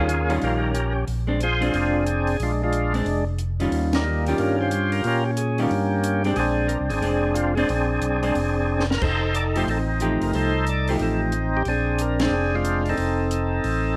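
A thick, lightly overdriven tonewheel organ carries the melody up front through a slow rotary speaker, its percussive key click riding over a fat, clean second organ holding the bass line with chorus vibrato. A warm, picked hollow-body electric guitar comps until 12.3 seconds, while a small, dark cocktail drum kit with a high-tuned snare and punchy kick sits back in the mix, adding a brief fill near 8.7 seconds. This greasy, swinging soul jazz organ trio excerpt moves at a brisk 181 BPM in Bb mixolydian over mostly ninth chords, with band accents punctuating the light reverb.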